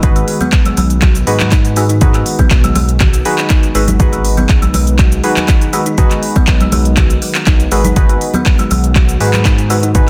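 An overdriven, deep electronic kick sits up front in this hypnotic, earthy afro house excerpt at 121 BPM in G# minor pentatonic, above a smooth sawtooth synth bass, mellow chorused chord stabs with tape echo, a detuned, nasal analog pad in the background, and a woody kalimba plucking short arpeggios from 0.2 seconds, alongside handclaps, smooth hi-hats and shaker from an afro-pop kit and close, bright congas, held on a single G#m7 chord with sidechain pumping on the bass, pad, stabs and kalimba in a dense, dry, heavily limited mix.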